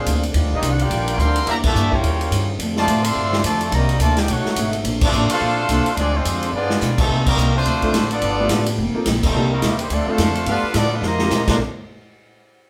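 Driven by a swinging big-band drum kit with a punchy kick and medium-tuned snare sitting up front, this brassy, energetic big band swing excerpt moves at a brisk pace, with the upright bass plucking woody, thumpy gut-string lines underneath. A clear trumpet section with light vibrato carries the melody, while a muted trombone section in a straight mute adds a nasal, bright second line in the background. A very quiet trombone section holds soft-attacked sustained chords until 7.1 seconds, and a picked, boxy old ladder-braced acoustic guitar with audible finger squeak picks out accompaniment further back. At 7.8 seconds a clear baby grand piano joins in the background as the harmony settles into a repeating cycle of minor sevenths, ninths and suspended chords. The full band hits accents along the way, the drums close with a fill ending at 11.6 seconds, and the whole group sounds like it is playing live together in one room with moderate studio reverb.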